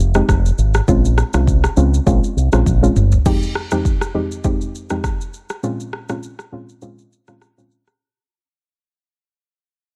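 This smooth, hypnotic afrobeats passage, cut from a longer piece, opens with a soft, round synth pluck, a fingered electric bass and an electronic afro-pop drum kit, all sitting up front with a gently swung sixteenth-note feel. The pluck carries the accompaniment in a dark, chorused tone with a fast attack and short decay, moving between Fm9 and Bbm7. The bass is punchy and direct, its envelope filter shaping a warm electric tone, and it drops out at 3.2 seconds, in the midst of a drum fill. The produced kit blends a deep kick with rim clicks, shaker, toms and crash cymbal. From 3.3 seconds the music fades out as a filter sweep passes over the pluck, and a break arrives at 6.8 seconds, all in a dry, close sound.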